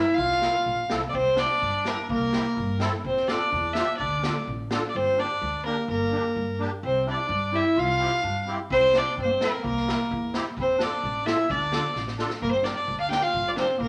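Klezmer at 128 BPM in a festive, soulful 2/4 that keeps speeding up, with an up-front bowed violin carrying the clear melody with light vibrato and an earthy edge, a mellow classical-style clarinet on the second line beneath it, a reedy, shimmering musette accordion comping through C, F, Dm and Gm chords, a woody, thumpy pizzicato upright bass on gut strings, and a boomy, airy street-band drum kit that drops out at 4.8 seconds, returns at 8.7 and plays a fill at 12.0, the whole cut from a longer piece set in wet studio reverb.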